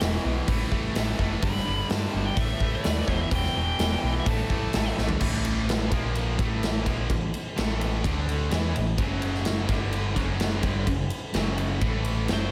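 A big arena-sized hard rock excerpt, driving and aggressive, where an up-front acoustic drum kit with a punchy kick and bright cymbals, a round, dark picked bass, and three background riff guitars (a bright high-gain one with slapback echo, an overdriven one, and a very quiet double-tracked sludgy one) push forward while a nasal, parked-wah lead guitar with digital delay sings a melody from 1.4 to 4.9 seconds, with a drum fill at 5.0 seconds leading into a new section of shifting power chords.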